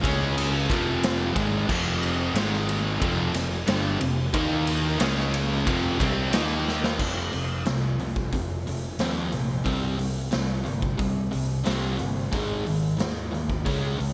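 A straight 4/4 hard rock groove drives this heavy excerpt, with a gritty, saturated garage drum kit up front in a bright stone room, punchy fingered bass, a sludgy distorted guitar in the background, a very quiet hollow-body semi-hollow guitar and a bright double-tracked distorted guitar sharing the riff until a drum fill at 6.7 seconds hands over to the second section at 7.0 seconds, where that bright guitar drops out, all set in a light small-room reverb with bright 1980s-style digital production.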